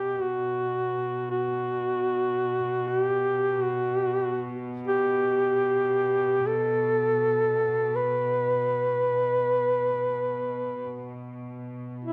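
A mellow, up-front solo duduk sings a mournful, longing Caucasian folk lament in free time with folk-style vibrato between E4 and B4, while a rich chamber cello section sustains a bowed, nasal gut-string drone on B2 with light period-style vibrato, both playing throughout this 12.1-second fragment of a longer piece, set in a wet recital hall reverb with a dark, warm production.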